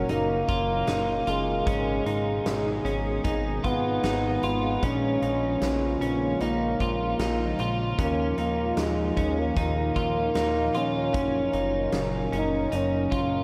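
A floating, dreamy dream pop passage in F# major at 76 BPM features a clear solo French horn carrying the melody in a classical style, its line touched by delay. Beneath it a warbling, lo-fi pad holds sustained chords with a nostalgic, detuned glow, its slow attack and long release softened by chorus and its own reverb. An electric guitar at the edge of break-up picks bright, twangy arpeggios through analog chorus and delay, while a glossy, retro synth bass with a fast, plucky attack anchors the low end. A big-room acoustic drum kit enters at 0.1 seconds with a punchy kick, a fat snare and hi-hat, sitting furthest back in the mix. The harmony moves from F# through G#m, A#m7 and D#sus2 before settling on F# again, and the whole cut-off fragment is soaked in a huge ambient reverb with a 7.8-second tail that blurs its edges into a haze.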